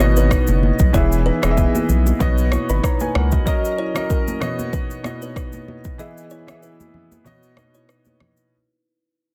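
Afrobeats with a sunny, breezy mood, this short passage from a longer piece fades out over its full 8.5 seconds. A clear, intimate grand piano sits up front, its long sustain and audible action noise carrying the accompaniment through chords that move between Badd9, E and F#6. A woody, mellow kalimba plays a soft riff with short fingertip plucks, touched by digital delay. A deep, thick, saturated sub bass with a fast attack drives the low end until 3.4 seconds. An electronic, produced drum kit with a deep kick, rim click and shaker stays up front with a lightly swung sixteenth-note feel, its snare carrying soft clipping, while high-tuned congas ring close and dry in the background from 0.5 seconds. The sound is dry and dense, with a heavily limited modern master.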